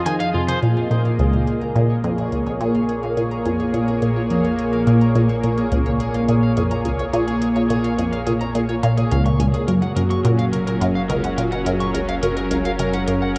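A lush, detuned unison pad with chorus opens this mysterious, cosmic piece of sequencer-driven ambient space music, soon joined by an up-front, squelchy blip-pluck riff soaked in phaser and tape echo, while a twangy, slightly broken-up electric guitar playing echoing arpeggios, a soft vintage rhythm box with metallic hats and toms, and a deep, round sine sub bass in the background all fade in from 0.6 seconds, the whole mix bathed in huge, wet reverb as the chords move from Fm7 to Bbm7 and then to Gb at 9.7 seconds.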